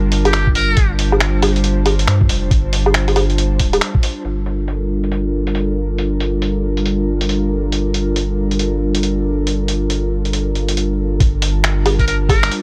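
The recording is dry and gritty, as if captured on hardware, with a digital ambience around it. This melancholic, rainy future garage fragment moves at 138 BPM in 4/4 with a 62% swing on the sixteenths, sitting in G minor over a Gm7 chord. An airy, breathy pad holds sustained chords up front, its slow attack and long release softened by chorus and roughened by vintage 12-bit sampler grit. Beneath it, a round sine sub bass pumps with sidechain alongside the pad. A muffled, pitched-down lo-fi kit of finger snaps, hi-hat and woodblock sits up front under low-pass filters and a filter sweep, while a thumpy, tape-warm electronic kick drops out at 4.0 seconds and returns at 11.2 seconds. A buzzy, thin trumpet with a metal mute plays brief phrases with vibrato and analog delay in the opening and closing moments of this fragment, cut from a longer piece.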